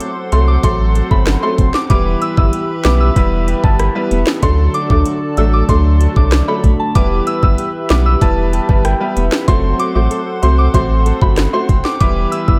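Dancehall in a hypnotic, tough mood, built on a straight four-beat groove cut from a longer piece. An electronic drum kit sits up front with a knocking kick, sharp snare, rim click and metallic hi-hats, re-recorded in a large room, while a deep, round sine sub bass enters at 0.3 seconds and holds steady beside it. A clear, worn grand piano carries the accompaniment, and a fingerpicked flamenco guitar plays arpeggios in the background, finger squeaks and all, alongside a hollow, flute-like pad whose sustained chords pump against the beat with chorus. The main melody comes from a pure, gentle FM bell, also from 0.3 seconds, trailed by dub echo, and a round, keys-like synth lead with vibrato adds brief second lines around 3.2 and 8.2 seconds. The harmony circles between E minor, D and a diminished chord on F sharp, and the mix stays dry apart from its heavy echoes.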